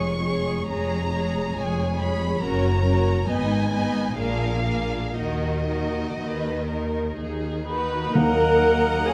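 A slow, elegiac romantic movement for symphony orchestra in Eb minor opens with the full string body at once: violins carry the melody high in their range with vibrato, soft attacks and expressive portamento, while a second violin line and violas fill the middle with a focused, smooth-topped sound. Beneath them, cellos and double basses hold the bass, sounding distant and warm under gentle vibrato. The pulse moves in a solemn, rubato 3/4 at roughly 59 to 71 BPM, and the harmony passes from Db over F through Gb, Ab minor and Bb7 before settling on Eb minor around 5.2 seconds. Near the end of this short excerpt the winds gather in the background, starting with a pure, straight-toned flute ensemble at 7.7 seconds, followed by a bright clarinet at 8.1 seconds and then, at 8.2 seconds, a clear but roomy oboe, a bassoon, sustained chords from a mellow French horn section and articulate timpani struck with hard mallets on Eb. 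The recital hall gives a moderate reverb around 1.5 seconds, while close, detailed microphones keep the playing intimate.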